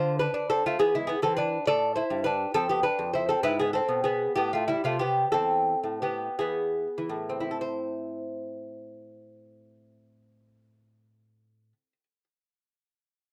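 A dry, close studio sound in the manner of the 1970s places a solo lute up front in this grave, solemn baroque-style dance in A minor, an excerpt from a longer piece, its bright, delicate gut strings, some doubled at the octave, fingerpicked in a rubato 6/8 at 47-69 BPM, slowing between 2.5 and 7.6 seconds before a new section begins, with the line ranging from E2 to D5 through chords such as Dm7, E7 and E/G# to settle on A minor.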